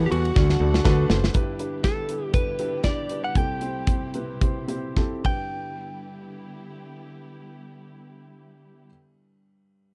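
Anthemic and hopeful, this short piano-driven pop passage in G major moves in 4/4 at 104-122 BPM with a light swing on the sixteenths, and it is cut from a longer piece. A dark baby grand piano carries the accompaniment throughout, its mellow, intimate tone coming with audible action noise and a short sustain, while a clean, direct-recorded electric guitar plays the melody, picked and compressed, colored by vibrato and slapback echo. Behind them a lush, woody string section holds bowed chords, and a fat, saturated analog bass with a sawtooth-and-square edge and a quick filter pluck sits up front for only the opening 1.3 seconds. A punchy modern studio drum kit with a medium-tuned snare, hi-hat, kick and ride plays until 5.4 seconds, marked by fills around the start and just before the final section. The tempo slows through the middle stretch as the chords move from D to G6, C6 and back to G6, all in a dry, close recording with a 1970s studio character.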